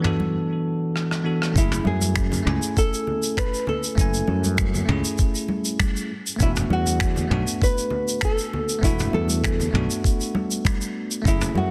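A straight 4/4 pulse at 99 BPM carries this smooth sunset chillout, opening with a clean, bell-like tine electric piano through delay, a dark brush kit with softly clipped snare, finger snaps, rim clicks, shaker and toms, and high-tuned congas ringing in the background, with a brief break and drum fill before 1.6 seconds. At 1.6 seconds a knocking electronic kick arrives up front, a growly, bright fretless bass sustains beneath, and a small, fingerpicked nylon-string guitar with audible finger squeak takes the melody through tape echo. The harmony moves from E9sus4 to F#m7 and back at 6.1 seconds, all set in light reverb and studio ambience within a dense, heavily limited modern master that leaves a warm impression.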